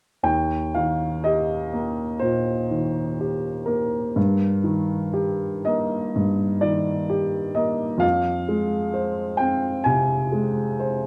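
Classical romantic nocturne excerpt for solo upright piano, nostalgic and tender in a rubato 4/4, its woody, open tone placed up front by close, detailed microphones within a moderate recital hall reverb, moving from Eb through Eb/G to Fm across roughly 11 seconds cut from a longer piece.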